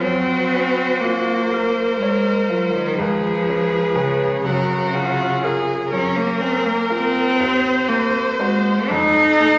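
In a rubato 6/8 lilt, this melancholic, solemn fragment of a slow romantic piano quartet movement sets a rich, focused violin melody with vibrato and a smooth top over a clear, close cello second line that sits up front, while a bright, brilliant baby grand piano and a viola with bowed vibrato fill out the accompaniment, the whole wrapped in a wet scoring-stage reverb and a vinyl crackle that dulls the highest frequencies.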